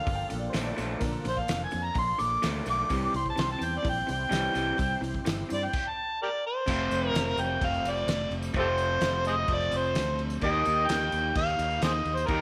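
A loose, straight 4/4 groove from an acoustic indie drum kit, with punchy kick, fat snare and dark cymbals pumping in the studio room, drives this hopeful, nostalgic slice of folk rock and heartland rock cut from a longer piece. Up front, an amplified, overdriven harmonica carries the melody with a gritty edge, vibrato, scooped notes, tongue slaps and a slapback echo, playing a solo through the first 6.7 s. Beneath it, an electric guitar through a small old amp plays a slightly broken-up, lo-fi riff, while a fingered electric bass adds a round low end. Further back, a jumbo steel-string acoustic guitar with fresh strings gives full-bodied picked accompaniment with audible finger squeak, and a jingly tambourine shimmers from a live room. A dark, woody upright piano line is heard only until 1.2 s, and a very quiet tonewheel organ holds lightly overdriven chords through a slow rotary speaker until 5.7 s. 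The whole mix sits in a moderate echo-chamber reverb with a small-room ambience.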